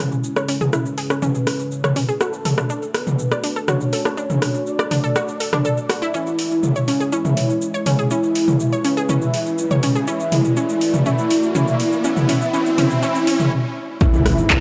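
A dry, gritty hardware recording with light reverb carries this driving, hypnotic melodic techno cut, built as one long build-up in which a fat, chorused analog lead melody with tape echo and a moody square-and-saw pad, sitting in the background with phaser and sidechain pumping, both rise through filter sweeps. An up-front, overdriven deep house kit of handclaps, metallic hi-hats, rim clicks, shaker and pumping toms drives beneath round, bright analog pluck arpeggios that carry their own chorus and tape echo. A riser climbs from 8.7 s to a stop at 13.5 s, and at 14.0 s an impact lands with an overdriven, deep electronic kick and a menacing, detuned saw bass swelling in the background.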